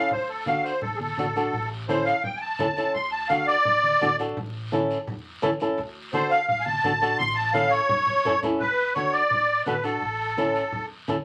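Vinyl crackle and a wet studio ambience surround this sunny, joyful cumbia fragment at 170 BPM in D major, where a reedy, shimmering musette accordion solos up front until 8.6 seconds over fingerpicked flamenco guitar, woody pizzicato upright bass, bright low-tuned congas and a raspy guiro in the background, with a drum fill from 7.2 seconds leading into a new section.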